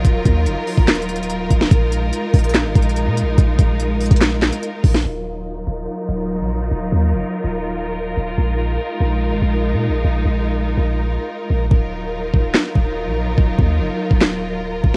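A half-time trap beat at 144 BPM in Eb minor, with a knocking kick, sharp snare, crisp tape-warm hats and handclaps, drops out at 5.0 seconds while a filter sweep passes over the lush, biting bowed strings with their vibrato, then returns at 11.7 seconds with the hats muted, over a deep, dark sine 808 bass, in this eerie, melancholic hip hop excerpt with a close, dry, lo-fi cassette sound.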